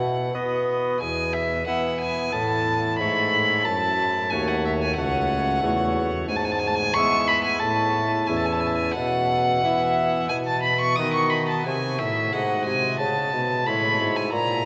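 Radiant and flowing, this baroque-style sonata movement in E major at 90 BPM in 4/4 sets an up-front, gut-string period violin with a reedy edge singing the melody over a nasal solo cornet stop on pipe organ and a soft-attacked solo bassoon with light vibrato carrying the bass line, all bathed in a long cathedral reverb as the harmony moves through A, F#m and Bsus4 before arriving on C#m at 13.0 seconds, where it rests until this excerpt breaks off.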